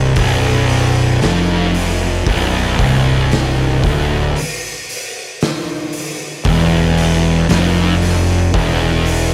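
A double-tracked fuzz guitar riff and a growly, fingered electric bass open this heavy, hypnotic stoner and doom metal fragment together, the guitar distorted and the bass overdriven, both pushed up front. An oversized, low-tuned acoustic drum kit joins at 0.2 seconds with a fat snare, a punchy kick and hi-hat, its gritty, saturated sound ringing in a bright stone room. The music sits on a single minor chord until 6.5 seconds, when the harmony drops away, all under light reverb and small-room ambience.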